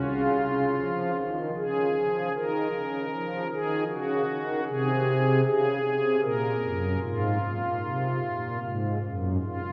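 In a straight 3/4 at 76 BPM, this majestic, reverent chorale-style classical piece in Db major features a solo pipe organ on soft, shimmering string celeste stops, voiced romantically and placed up front, ranging from Gb2 to Bb4 and moving from Db through Ab/C, Gb/Bb and Ab69 to a Gbsus2 at 8.6 seconds, set in a long, wet cathedral reverb with a touch of small-room ambience in this short cut from a longer work tuned to A4 = 441 Hz.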